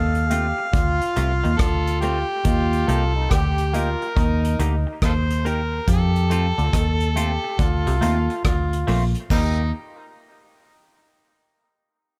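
A dry cut from a longer roots reggae piece, sunny and laid-back, swinging gently in 4/4 over chords that move between F and Eb. A gritty, overdriven harmonica carries the melody with tongue slaps and scooped notes, joined by a brilliant, distant trombone on a second line, both trailing dub echo, while a semi-hollow electric guitar adds clean, compressed accompaniment through phaser and echo from 0.3 seconds. Underneath, a dark, round, foam-muted electric bass sits up front, a soft brush kit with a punchy kick, hi-hat, rim clicks and crash keeps time, and a stringy clav riff flickers through a phaser in the background until about 9.0 seconds.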